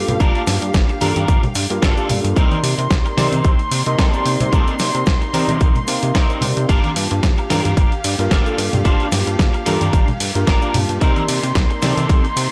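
A dry, gritty cassette-tape sound frames this sleek, cosmic nu-disco fragment in G minor at 111 BPM, swung on the sixteenths and moving between Gm7 and Cm7. A punchy, up-front electronic kick sits atop a dusty sampler-style kit of hi-hat, ride and medium-tuned snare, with soft-handed cabasa and congas tucked in the background, while a glossy, evolving pulse-and-saw synth bass with a filter pluck carries the low end. A twangy, slightly broken-up electric guitar riff with ensemble chorus and tape echo enters at 0.2 seconds over a clean tine electric piano that pumps beneath the kick, and smooth, bowed chamber strings with vibrato hold sustained chords throughout.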